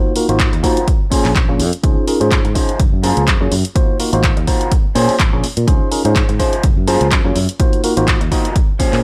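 This dry, close-sounding cut from a longer filtered disco house track runs at 125 BPM in 4/4 with a light swing on the sixteenths, and a filter sweep spans its full nine seconds. The mood is sunny and feel-good. A mellow, worn tine electric piano opens the passage, slightly out of tune and treated with phaser, sidechain pumping and a low-pass filter as it carries the chords Ab13, Bbm9, Dbmaj9 and Gbmaj9#11. A punchy analog drum machine adds handclaps and hi-hats, with pumping on the hats, while a separate analog-style electronic kick sits up front. Growly, bright fingered electric bass and a dark, slightly broken-up picked guitar riff through a small old amp both arrive at 0.3 seconds, each pumping and low-pass filtered. The four-chord cycle comes round twice before landing back on Ab13, giving the loop an easy, upbeat lift.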